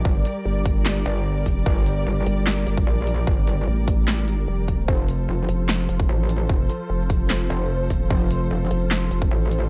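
Menacing and heavy, this short cut of wobble dubstep moves at 149 BPM in a half-time 4/4 feel, sitting in G minor as the harmony shifts from Gm to F at 4.9 seconds. Two wobble basses dominate, both up front with chorus and overdrive: a metallic, aggressive FM voice that is saturated and compressed, and a nasal, formant-filtered vowel-sweep bass that enters at 0.5 seconds. Beneath and around them, a punchy electronic kick sits forward in the mix, joined by a big-room dance kit of crisp hats, handclaps and a punchy snare, both drum parts layered, tape-warm and re-recorded in a large room. Far back, a muted studio string section holds sustained chords, bowed con sordino with vibrato, its veiled tone shaped by a low-pass filter and sidechain pumping. The overall production is dark and dry, with little reverb.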